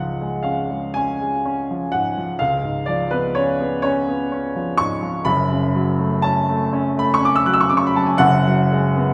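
A clear, open baby grand piano sits up front in this mournful, melancholic excerpt of a romantic classical nocturne, unfolding alone in a slow, rubato 6/8 at 41 BPM across a span from F#1 to F#6, moving from C# through C#7 to F#m at 5.3 seconds and G#m7/F# near the close, all bathed in the wet reverb of a scoring stage.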